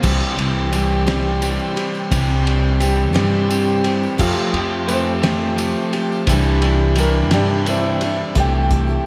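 A slow, straight 6/8 sway at 58 BPM carries this nostalgic, hopeful folk rock and heartland rock excerpt in C major. It rests on a bright picked steel-string acoustic guitar, a growly, woody upright bass up front, a muffled, cloth-damped drum kit with a fat snare, tight kick and dark cymbals, and a jingly tambourine in the background. An electric guitar at the edge of break-up plays a riff through vibrato and slapback echo, and an overdriven tonewheel organ holds very quiet, gritty chords through a rotary speaker, while a clear, slightly detuned upright piano adds a second line with slapback echo from 4.2 s as the chords move from C through Fadd9 and Cadd9 to C6, the whole mix set in lush hall reverb for a big arena sound.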